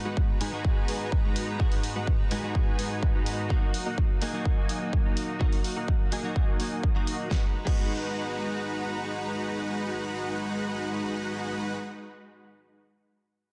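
Anthemic and emotional, this excerpt of festival progressive house at 126 BPM in G# minor, tuned to A4 = 436 Hz, moves from G#m7 to D#m and back, led by a huge, thick, detuned supersaw riff that sits up front with sidechain pumping, tape echo and a filter sweep running until 7.3 s. A punchy, layered electronic kick and a big-room kit with a huge snare, crash cymbal and hi-hat drive the groove until both drums stop at 7.8 s. Beneath them, a picked, clean direct-recorded electric guitar with analog chorus and tape echo and a bowed string section with a biting, smooth top hold the harmony, both pulsing with sidechain pumping in a dense, heavily limited mix with light digital reverb.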